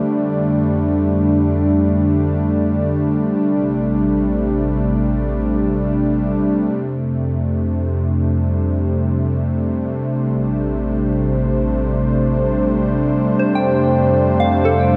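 Steeped in plate reverb, this dreamy, peaceful ambient piece in free time floats on a smooth, detuned sawtooth pad with chorus sitting up front over a deep, round sine sub bass, the harmony moving between Fadd9 and Am7, until a soft, pure FM synth bell with chorus, phaser and diffuse delay enters at 13.4 seconds with luminous arpeggios.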